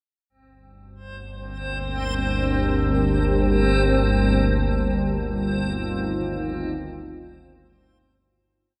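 Dark ambient drone in free time and G minor, tuned to A4 = 445 Hz, this short, ominous piece opens with a reversed, swelling granular texture holding a bright high note from 1.1 s. It is joined by a calm, detuned organ-like drone low in the range with ensemble chorus, and by a deep, warbling, vintage pad moving slowly from Gm to Ebsus2/G, all steeped in a huge, wet reverb. The drone fades in from 0.3 s, and the whole piece fades out from 4.3 s.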